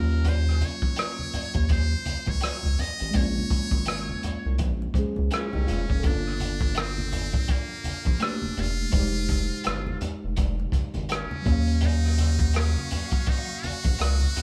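R&B and neo-soul with a soulful, late-night mood, this cut from a longer piece sways on a swung sixteenth-note feel, like a band playing live in one room with light reverb. A close-miked trumpet with a metal mute carries the melody in a buzzy, thin, forceful pop style with vibrato, over a worn, slightly out-of-tune tine electric piano that moves through minor ninth chords from Ebm9 and Bbm9 to Gm9 and Fm9. A deep, dark analog bass with a fast-attack filter pluck anchors the low end, and the gritty, saturated breakbeat kit sits up front with a tight kick, hi-hat and rim click under a rolled-off top. Low-tuned congas played with hard hands stay very quiet in the mix. A small, thumb-plucked nylon-string guitar adds a brief second line at 5.3 seconds, and a lush, bowed studio string section enters in the background at 11.8 seconds with smooth sustained chords.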